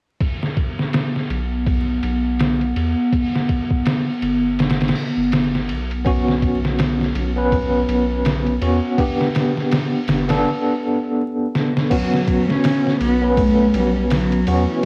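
A dark, bowed cello carries the melody in the closing seconds of this melancholic, brooding trip hop excerpt. It enters at 11.9 seconds with vibrato, portamento and a gritty 12-bit sampler edge, coloured by cassette tape and tape echo. Before it, a bell-like tine electric piano arrives at 6.0 seconds and sits up front with tremolo and tape echo, and a filter sweep on it shapes the final stretch. The sampler-style drum kit is compressed, pitched down and overdriven, with a thumpy kick, muffled low-passed cymbals, a swung feel and a short fill just before the cello's entry. A round analog bass holds the low end, while a warbling, detuned pad with chorus and its own reverb sustains chords over G and Bsus2 until the cello takes over. The recording has the nostalgic character of a cassette home recording with vinyl crackle, set in a wet, short booth ambience.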